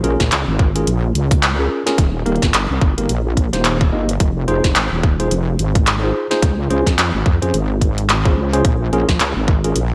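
A bright, 1980s-style digital production with a light reverb frames this playful, funky glitch hop clip, cut from a longer piece and swung on the sixteenths in 4/4. A heavy, detuned wobble bass sits up front, its sawtooth and sine layers thickened by chorus and tube saturation into a resonant yet mellow growl. The drums stack a tight, overdriven electronic kick, entering at 0.2 seconds, over a layered kit of cracking snare, handclaps and bright hats, made gritty by overdrive and gated reverb. A worn, slightly out-of-tune tine electric piano plays clean stabs that pump against the sidechain and echo through a digital delay. The harmony moves through Bbm7, Eb, Fm7 and Dbmaj7 before returning to Bbm7.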